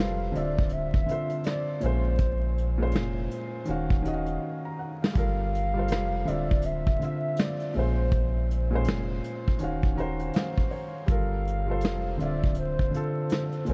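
This lo-fi hip hop excerpt has a nostalgic, melancholic mood, set in 4/4 with a swung sixteenth-note feel. A felt-muted upright piano carries the accompaniment from the start, its mellow, intimate tone marked by audible action noise and a cassette-tape, low-pass character. Underneath sits a saturated sub bass, deep and thick with a fast attack. A vintage brush drum kit enters at 0.3 seconds, dark and smooth with a tight kick and a rolled-off top, and adds a fill at 4.4 seconds. Above it all floats a hollow, woody clarinet-like synth lead with vibrato, chorus and analog delay, while the piano takes a fill at 9.6 seconds. The harmony moves through minor ninth chords such as Dm9, Bbm9, Ebm9 and Gm9, framed by light reverb, small room ambience and vinyl crackle.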